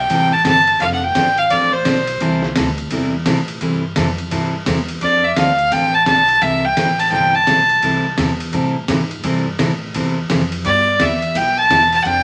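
Wrapped in vinyl crackle and a wet studio reverb, this cheerful, swinging western swing excerpt at 171 BPM in C major puts a clear, earthy bowed fiddle up front with light vibrato, carrying the melody in short phrases over a bright, full-bodied picked jumbo acoustic guitar with finger squeak, a woody, thumpy pizzicato upright bass, and a gritty, compressed sampler-style drum kit of overdriven hi-hat, ride and fat snare, re-recorded in a small room, as the harmony moves through C6, F6 and G6.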